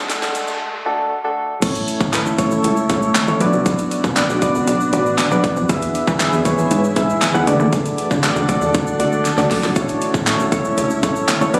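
Euphoric and summery, this dance-pop excerpt moves at 118 BPM in a straight 4/4 in A major, cut from a longer piece. It opens with a brief build-up, where a short electronic riser, a drum fill and a filter sweep lead into the drop at 1.6 seconds, as a plucky analog bass enters with a punchy, funky, wave-folded tone. Soft, round electric-piano-like synth keys sit up front with chorus and sidechain pumping, while a glassy, ethereal FM pad arrives at 2.2 seconds, holding sustained chords in the background with ensemble chorus and its own reverb. The layered pop drum kit is punchy and up front, with a fat snare, metallic hats, handclaps and crash, and a second fill arrives around 9.3 seconds, while a grainy, distant egg shaker adds texture behind it all. The chords move from D to A, B minor, E, and back through D to A, and the whole has a light club reverb and the thin, filtered character of a phone recording made in the room.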